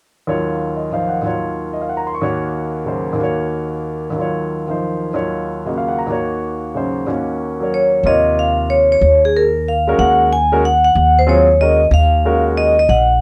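This searching, spiritual modal jazz excerpt in Eb dorian opens with a clear, intimate concert grand piano alternating Ebm9 and Gb/Eb chords, its action noise audible, swinging in 3/4 at 185 BPM. At 7.7 s a dark, ringing vibraphone with medium hard mallets and a slow motor vibrato takes the melody, and at 8.0 s a woody, pizzicato upright bass on gut strings joins with a thumpy low line. A light reverb surrounds the parts.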